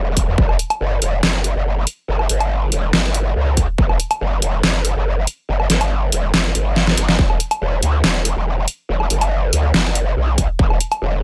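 A growling, wobbling bass opens this menacing, chaotic stretch of heavy half-time dubstep, its saturated, formant-filtered tone sitting bright and up front with chorus and overdrive from 0.0 seconds. At 0.2 seconds an overdriven dubstep kit joins with hi-hat, woodblock and a deep snare, while a punchy electronic kick hits only in brief moments and drops out for a drum fill between 6.8 and 7.2 seconds. The dry, close mix keeps every part in the listener's face throughout this short cut from a longer track.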